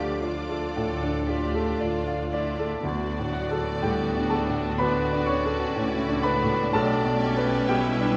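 Classical romantic movement for piano and orchestra in D major, tragic and passionate at a slow, rubato 57-63 BPM, where an intimate, up-front baby grand with audible action noise and long sustain carries the melody over a background violin melody, an intense second violin line, lush viola accompaniment, smooth-topped cellos and expressive close double basses, while mellow French horns hold chords until 2.5 seconds and calf-headed timpani sound from 2.8 to 4.3 seconds as the harmony turns from D minor to D major, all in a reverberant concert hall.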